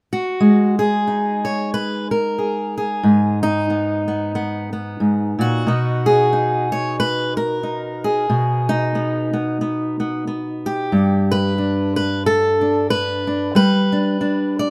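Light reverb surrounds an up-front steel-string acoustic guitar, its fresh strings sounding warm with the odd finger squeak. This short folk passage is a gentle, hopeful solo fingerstyle piece at 91 BPM in 4/4 with a lightly swung eighth-note feel. The fingerpicked guitar ranges from G2 to D5 and moves from G#madd9 to B at 5.7 seconds, then to G at 10.9 seconds.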